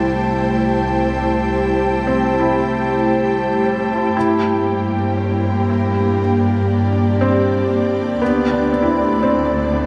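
Heard first are an airy, detuned pad holding sustained chords with ensemble chorus and shimmer reverb, a dark, woody bowed cello section in the bass, and a pure, glassy glass harmonica on a single high note until 4.2 seconds, while a soft, felt-muted upright piano with audible action noise enters at 2.1 seconds with arpeggios through tape echo, all within a serene, peaceful ambient fragment at 59 BPM in a concert hall reverb, moving from C6 to Gm at 4.2 seconds and to D at 8.2 seconds.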